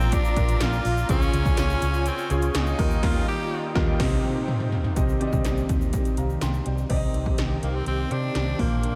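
A straight 4/4 pulse at 124 BPM drives this nostalgic, moody 1980s-style pop clip in C minor, carried by up-front electronic pad drums with a punchy kick, metallic hats, and gated reverb on the snare and toms. A dark, foam-muted fingered electric bass sits round and amped beneath polished grand piano, while a detuned sawtooth analog pad with slow attack and chorus hangs mellow in the background alongside a grainy, close tube shaker. A raspy, gritty tenor saxophone with light vibrato and analog delay leads the melody in a forceful pop style, pausing at 3.7 s and returning at 7.6 s. The chords move from Bb to Db, then Ebadd9 and Cm; the band hits an accent from 3.0 s, and the drums play a fill at 4.0 s. A huge ambient reverb soaks the whole mix in a dreamy haze.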